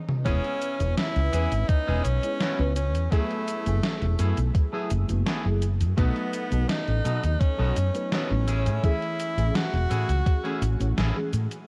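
Woozy and dreamy, this vaporwave fragment from a longer piece drifts through a lush chord progression as a bright, close-miked tenor saxophone sings with vibrato through tape echo over a dark, detuned FM electric piano with a soft pad layer, a clean picked guitar riff in lush chorus and analog delay, a growly, round fretless bass up front, and a gated 80s drum machine of cabasa, hi-hat, toms and a gated-reverb snare joined by a thumpy electronic kick, all coloured by cassette tape and light reverb.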